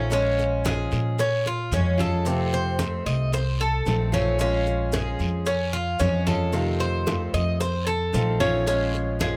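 Sultry and danceable, this short cut of Cuban son and guajira in Bb minor moves at 112 BPM over a Bbm7 to F7 vamp, with woody, thumpy pizzicato upright bass on gut strings and a metallic, double-strung Cuban tres playing arpeggios up front, a bright, boxy picked archtop guitar comping beneath them, very quiet low-tuned, saturated congas, and tight high-tuned bongos, a raspy guiro and grainy maracas sitting in the background of a close, dry, detailed mix.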